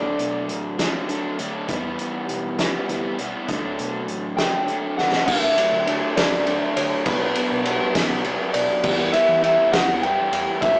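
A loose, unhurried 6/8 sway at 67 BPM carries this carefree, jangly indie rock excerpt in D major, where a bright, twangy lead guitar through a small old amp picks a slightly broken-up melody from 0.0 to 1.4 s and again from 4.4 s, over an up-front, double-tracked crunchy overdriven riff, a round, dark hollow-body bass sitting in the background, and a roomy, distant drum kit with a fat snare and punchy kick that enters at 0.2 s and fills at 5.0 s, all heard through a rough rehearsal-room sound with stone room reverb as the chords move from D through Em to Dadd9 and Bm.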